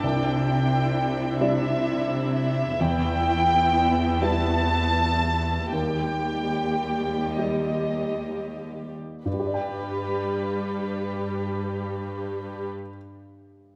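Cinematic, emotional film score in a rubato 6/8, hopeful and tender, where a dark, intimate chamber violin section carries the melody up front with vibrato and soft sul tasto bowing over a present baby grand piano, a gently bowed viola section and a lush cello section on the bass, while a ringing concert harp is barely audible at the very start; the music slows from 1.4 to 9.3 seconds before settling on a G chord in a wet scoring-stage reverb, and this portion of a longer piece closes with the piano sounding alone until 13.8 seconds.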